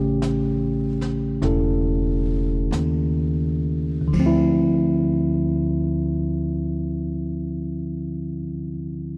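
Jazz ballad, smoky and intimate, in D minor at a slow 41-52 BPM with a swung feel, slowing down over its opening 4.1 seconds as a clean, up-front tine electric piano through a combo amp moves from A7 to Dm9 above a woody, thumpy pizzicato upright bass on gut strings, while a faint brushed kit with dark cymbals, a high-tuned snare and a boomy kick sits in a small room until 4.8 s, in a dry, close 1970s-style studio sound.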